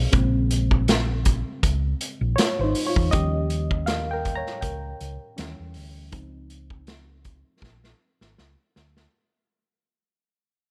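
A reedy, slightly out-of-tune electric piano with a phaser takes the lead from the start over a dark, round hollow-body bass, setting a lush, smooth 1970s-style soul mood with a lightly swung sixteenth-note feel as the fragment fades out. A vintage acoustic kit of hi-hat, punchy kick and medium-tuned snare joins at 0.1 seconds with a rolled-off top and a pumping small-room sound, moving through chords from Bbm9 to Dbmaj9. A drum fill closes the passage from 7.6 seconds.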